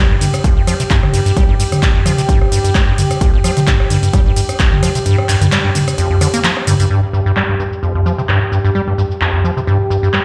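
A moderate plate reverb and a large studio ambience give this recording the boom of a big sound system in a bare room. It is a gritty, driving acid house piece at 130 BPM in 4/4, with a light swing on the sixteenths, cut from a longer track. A squelchy, hollow square-wave acid bass sits up front, playing a resonant, saturated riff with a plucky filter, fast attack and overdriven tape echo, pumping against the sidechain. Beneath it, a smooth, detuned sawtooth pad holds soft chords with chorus, also pumping. A booming analog drum machine brings metallic hats, handclaps, cabasa, ride cymbal, rim clicks and toms, all muffled by low-pass filtering, while a punchy electronic kick drives the groove from 0.4 s until it stops at 4.7 s. Around 6.9 s the music moves from a chordless opening into a new section built on a G7 chord.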